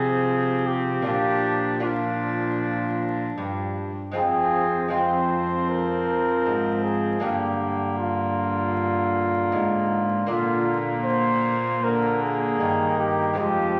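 A classical, Renaissance-style consort dance at 78 BPM in 4/4, this courtly yet rustic excerpt moves through F minor, B-flat and G minor harmonies. A dark cornet carries the melody up front, over a viola second line with light vibrato and a gut-string tone, a brilliant but distant trombone, a delicate fingerpicked lute with double strings in the background, and a rich, close cello holding the bass. The ensemble sits in a wet recital hall reverb with a layer of vinyl crackle.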